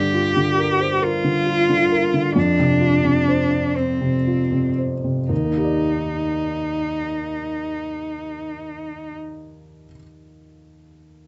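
Neoclassical piano and strings in a tender, hopeful mood, this fragment of a longer piece sways in a rubato 6/8 that slows through its first 5.3 seconds, with a mellow, intimate felt-muted upright piano up front, its action noise audible, carrying the accompaniment while a single bowed cello sings a clear, smooth second line with light vibrato until 9.1 seconds, after which the piano continues alone to 11.3 seconds, heard through light reverb in a rough home-demo mix with a dull, rolled-off top end.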